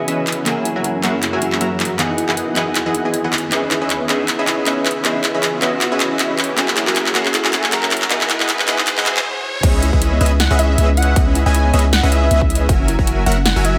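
Future bass in a dreamy, lush half-time swing, where a twangy clean electric guitar, a shimmering ambient pad and a tine-like thumb-piano-like synth pluck arpeggio sit in the background under a punchy, detuned supersaw stab riff and a very quiet riser as the big-room dance drum kit's metallic hats and punchy snare fill the filter-swept build-up, until a brief break at 9.3 seconds opens into the drop at 9.6 seconds with a deep, mellow 808-style bass, a layered electronic kick drum and, from 10.4 seconds, an airy, soft lead with vibrato and portamento, all bathed in a lush hall reverb.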